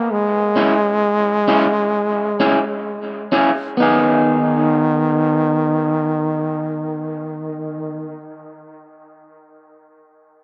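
Reggae with a hypnotic, spacious mood, cut from a longer piece, where a warm, punchy trombone with vibrato and a smooth top carries the melody up front under dub echo, joined at 0.6 seconds by a bright, slightly broken-up, twangy electric guitar through a small old amp, treated with spring reverb and dub echo, all set in a moderate plate reverb as the harmony moves from C#m to G#m at 3.8 seconds.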